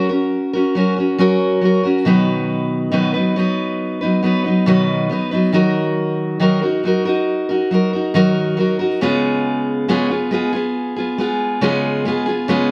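A fingerpicked steel-string dreadnought acoustic guitar plays alone and up front from 0.0 to 12.7 seconds, moving through F#, B, D#m and C#7 in a tender, hopeful pop excerpt at 69 BPM in a straight 4/4, tuned to A4 = 443 Hz. The guitar's warm tone sits in a dark production, surrounded by a moderate recital hall reverb with a 1.4 second decay.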